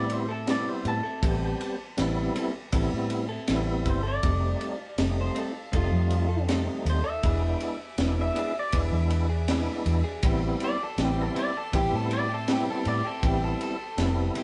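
A twangy, slightly broken-up electric guitar through a small old amp carries the delayed melody of this brooding, soulful straight-eighth soul blues, set over a full, lightly overdriven tonewheel organ with slow rotary swirl and chorus vibrato, a dark, round foam-muted bass, compressed clean guitar stabs in the background, and a muffled, lo-fi funk kit with a high-tuned snare, tight kick and ride, while a lush bowed string section slips in softly behind at 4.2 s, all in one live room with moderate reverb and a rolled-off top.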